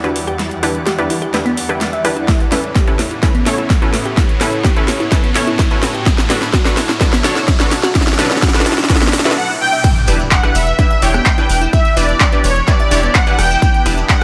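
Driving and emotional, this progressive house excerpt moves at 127 BPM in E dorian, climbing through a build-up over Em7, Aadd9 and Bm7 before a short break at 9.4 seconds and a drop at 9.8 seconds. A shimmering, ethereal pad holds sustained chords in the background, while a glassy wavetable pluck spins crystalline arpeggios and a lush, detuned unison pluck punches out stabs, both synths swept by filters and trailing dub echo through the build. The big-room kit drives a drum fill with a huge snare, metallic hats, handclaps, rim clicks and crash, joined at 2.3 seconds by a punchy, up-front electronic kick, as a riser climbs in the background and lands on an impact. From 9.4 seconds a smooth supersaw melody takes the lead, shadowed by a very quiet, evolving second supersaw line, while a thick, saturated sub bass anchors E1 and a grainy, distant shekere adds texture. The pad, plucks, lead and sub all pump with sidechain compression, and the whole mix sits in light digital ambience at a loud overall level.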